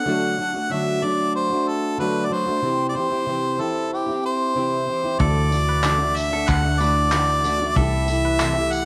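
Acoustic pop with a carefree, sunny mood, moving at 94 BPM in a straight 4/4 feel in D mixolydian, heard as a short cut from a longer piece. A bright, close-miked harmonica carries the melody up front throughout, with a light vibrato and scooped notes, over a dark, full-bodied, double-tracked fingerpicked steel-string acoustic guitar that shifts from D to C. At 5.2 seconds the music opens onto Dadd9 and Am7/C as a round, foam-muted vintage electric bass and a loose indie drum kit enter, the kit giving a punchy kick, handclaps and tambourine with a rolled-off top in a studio room sound. A clean, twangy electric guitar plays compressed arpeggios in the background from that point, and a very quiet, jingly tambourine joins close and dry at 5.8 seconds. A moderate plate reverb lends the mix a gentle sense of space.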